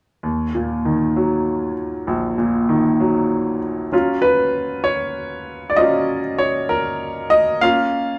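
A slow 6/8 sway at 65 beats per minute, counted in dotted quarters with a straight feel, sets the pace for this aching, melancholic pop excerpt in E-flat minor. A grand piano carries the whole passage, playing accompaniment from 0.2 s and stepping forward as a solo voice from 3.9 s to the close at 8.2 s. Its tone is bright and polished, with a short sustain and an up-front presence, ranging from deep in the bass up into the upper middle register. The harmony rests on E-flat minor, shifts to E-flat minor seventh at 3.9 s, and turns to B-flat minor near the end. A wet studio reverb gives the sense of players sharing one room, and the passage is cut from a longer piece.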